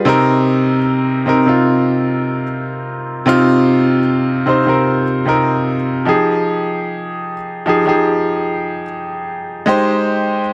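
A lone baby grand piano opens this short R&B fragment in C minor, its clear, intimate tone placed up front, with the mechanical noise of the keys audible and long sustain hanging over a light small-room reverb. At an unhurried 75 BPM in straight 4/4, it moves from Cm7 to Fm9 at 6.1 seconds and reaches Abmaj7 at 9.7 seconds, staying between C3 and C5. The mood is longing and late-night, and the passage is cut from a longer piece.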